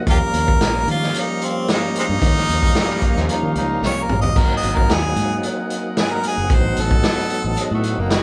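A straight-eighth 4/4 groove at 112 BPM drives this gritty, swaggering soul blues in Eb mixolydian: an up-front soul drum kit with dark cymbals, a tight kick and a fill at 3.8 seconds sits under a round, foam-muted fingered electric bass, a lightly overdriven tonewheel organ with key click and slow rotary speaker, and distant, roomy sustained horn-section chords, while a clear harmonica carries the melody with vibrato, tongue slaps and scooped notes through tape echo, and a raspy, growling tenor saxophone adds brief lines at 2.8 and 7.6 seconds, the band playing live together in a large studio room.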